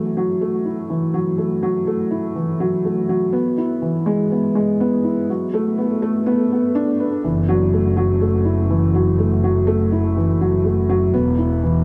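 A felt-muted upright piano opens this melancholic, cinematic piano and strings electronica excerpt, playing a riff in F# minor at 123 BPM in a straight 4/4, its tone soft, boxy and intimate under thick felt and touched by a digital delay. Through the build-up the harmony moves from F#m7 to E and then Bm7, and the piano sits up front in a huge ambient reverb with a long 5.4-second tail. At 7.2 seconds the drop arrives and a chamber double bass section enters on the low notes, bowed with light vibrato and an earthy body beneath a smooth top. The bass stays close and present alongside the dark, mellow piano as the chords return to F#m7. The fragment ends at 11.8 seconds on an E5 chord, cut from a longer piece.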